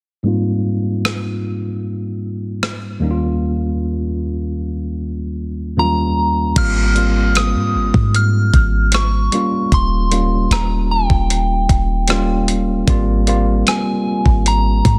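Tender and smooth, this contemporary R&B excerpt moves at an unhurried 76 BPM in a straight 4/4, settled in Ab major and drifting between Abmaj13 and Eb9 chords. A worn, slightly out-of-tune tine electric piano opens at 0.2 seconds, lightly overdriven and heard as if through built-in speakers, with a filter sweep shaping its sound through the first section. A gated 80s digital drum machine joins with a thumpy kick, hi-hat, rim click and crash, its sampler-style grit and overdrive giving it a small-room, up-front punch, before the drums drop out between 3.4 and 6.6 seconds. A soft, pure FM synth bell carries the high melody from 5.8 seconds, gently warbling through chorus and delay. At 6.6 seconds a clean, boomy 808-style sine bass arrives up front with a fast attack and dark decay as the drums return, anchoring the second section under a dense, heavily limited master with digital ambience.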